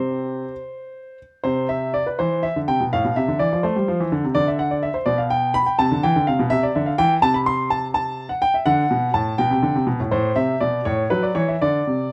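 A 6/8 pulse at 83 BPM in dotted quarters, played with free rubato, carries this playful, cheerful classical-period piano sonatina fragment, where a solo grand piano, clear and intimate with its action noise audible up front, ranges from A2 to C6 through a moderate studio reverb and a dark production, starting in C major and moving to G major at 7.2 seconds before ending on a suspended chord at 11.6 seconds.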